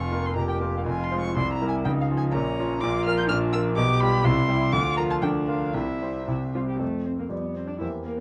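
A clear, up-front concert grand piano with deep bass and audible action noise opens together with a veiled, con sordino solo violin carrying the melody with vibrato and portamento and a distant, soft-attacked muted cello on the second line, in this urgent, dramatic piece from a quick classical-period piano trio movement at 122 BPM in 2/4, played with rubato under moderate studio reverb and a dark production as the harmony passes from Bb5/F through Fm and C7 before a new passage begins on F at 6.8 seconds.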